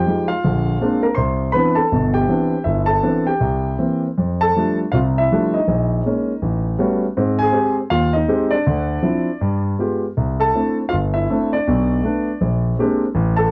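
A concert grand piano with a warm, natural tone and deep bass sits up front, playing alone across its range from G1 to C6 in this sophisticated solo jazz fragment of a longer piece. It moves in 4/4 at 161 BPM with a swung, rubato feel in C major, tuned to A4 = 445 Hz, passing through rich harmony such as Bb9 and Cmaj9 before a new section opens at 4.2 seconds on F69 and travels on through Abmaj7 and G7b9. The dry, close 1970s-style studio sound carries only a light touch of reverb.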